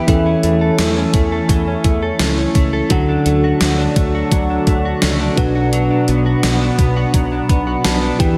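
1980s-style pop with a glossy, uplifting mood, this short clip moves through A/E, D and Bm in a big arena-sized hall. A bell-like tine electric piano carries the accompaniment and adds a fill at 7.1 s, while a detuned sawtooth pad with chorus holds evolving, resonant sustained chords and a bright, compressed clean guitar plays a picked riff through chorus, delay and slapback echo. Underneath, a dark, round fretless bass plays alongside an up-front, overdriven, sampler-style drum machine with a thumpy kick, gated-reverb snare, hi-hat and tambourine.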